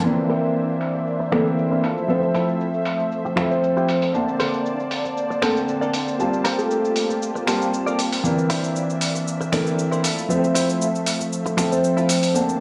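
Nu-disco at 117 BPM in C mixolydian, this groovy, feel-good excerpt sets a worn, boxy grand piano and a twangy, direct-recorded clean electric guitar riff with filter sweeps over a lush, detuned sawtooth pad and a gritty, tape-warm sampler-style kit of finger snaps, hi-hat and shaker, while a round, octave-layered synth lead with vibrato enters at 1.3 s above chords moving from C9 through Fmaj7, Bbmaj9 and Gm11, all bathed in plate reverb within a dry, small-room hardware sound.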